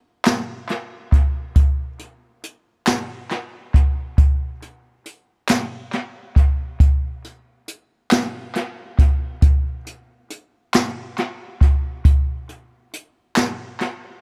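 A jazz brush drum kit, up front with its high-tuned snare, boomy kick and hi-hat, carries this reverent, soulful gospel excerpt in a slow 6/8 at 46 BPM on dotted quarters, while crisp, band-limited group handclaps sit in the background from 0.2 s, both parts trailed by analog delay in a dry, echo-heavy mix.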